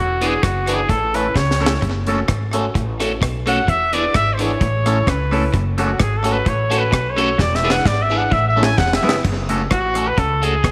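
Ska in F# minor at 129 BPM with a light swing, mischievous and driving, with a roomy trumpet carrying a punchy, vibrato-laced solo up front over a bright, very quiet picked guitar riff and a woody, growly pizzicato upright bass, all cycling through E7, A and F#m. A slightly broken-up electric guitar with phaser and a boxy upright piano adding stabs join at 0.2 seconds, along with a dry reggae kit with a high-tuned snare, tight kick, rim clicks and tape echo, which throws in fills around 1.4 and 7.4 seconds. A moderate echo-chamber reverb surrounds this short cut from a longer piece.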